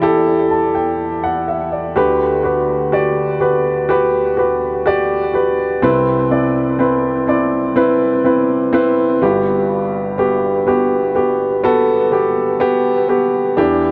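Pop in G major at a slow 62 BPM in straight 4/4, this short excerpt, taken from a longer piece, carries a heartfelt, hopeful mood. A lone upright piano plays throughout, from 0.0 to 13.9 s, ranging from G1 up to A5. Its tone is woody, smooth and vintage, with long sustain, and it sits up front in the mix with a touch of digital delay. The harmony moves from Em7 to Gmaj7/D at 2.0 s, then to Cmaj7 at 5.8 s before settling on Gmaj7 at 9.2 s. Light reverb and a dark, warm production surround the piano, with the instrument tuned to A4 = 442 Hz.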